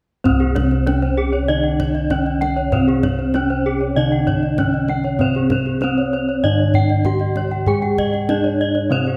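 At 0.2 s, a ceremonial, shimmering passage of Balinese gamelan begins: a low bronze metallophone accompaniment struck with wooden mallets, a high arpeggiated metallophone line, and soft, round bossed gongs played with padded beaters carrying the bass. At 0.3 s a metallophone melody in the middle register enters, sounding vintage and band-limited in the background, along with a deep, close kendang set behind the ensemble. A second arpeggio part joins at 0.4 s. The two arpeggio lines are struck with horn mallets and sound bright and airy, while they and the accompaniment use paired tuning that produces a shimmering beating in the bronze. The pelog tune centres on C at a steady 97 BPM in straight 4/4. A long, wet recital-hall reverb surrounds the ringing metal through this brief cut from a longer piece.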